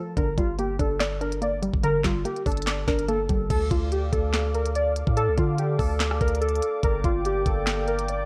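Warbling, detuned lo-fi synth keys carry a nostalgic melody through this melancholic yet hard-hitting half-time trap excerpt at 144 BPM in D minor, first over a dusty, chorused pluck that stops at 3.5 seconds, when a moody, dark analog pad with a slow attack enters, while a deep, mellow sine 808 bass and an up-front electronic kit of knocking kick, sharp snare, crisp hi-hats, handclaps, rim clicks and crash drive the groove, with light reverb and worn cassette-tape pitch drift over the recording.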